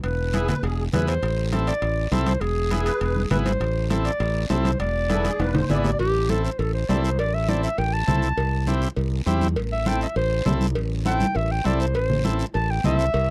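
A dry, close 1970s-style studio sound frames this fiery, passionate cumbia fragment, with a growly, punchy fingered electric bass and a buzzy vintage combo organ with light vibrato sitting up front. A clear, classical-style clarinet carries the melody, while a reedy, shimmering musette accordion adds a dark second line until 6.0 seconds. In the background, hard-handed congas and ringing timbales and cowbell drive the groove alongside a close, raspy guiro; a drum fill at 5.1 seconds leads into a clarinet solo from 6.0 seconds.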